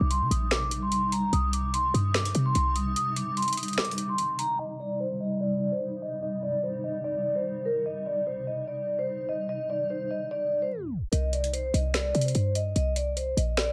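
Lightly reverberant digital ambience frames this brooding, eerie trap excerpt in C minor at 147 BPM with a half-time feel, where a ringing, slow-vibrato vibraphone melody with a low-pass filter sits up front over a cloudy, detuned granular pad, a punchy sine 808-style bass with a noise layer, and an electronic kit of finger snaps, metallic hi-hats and woody snare, moving through a break at 3.0 s, a filter sweep in the middle and a tape stop at 10.7 s before the bass and drums come back in at 11.1 s on a C5 chord.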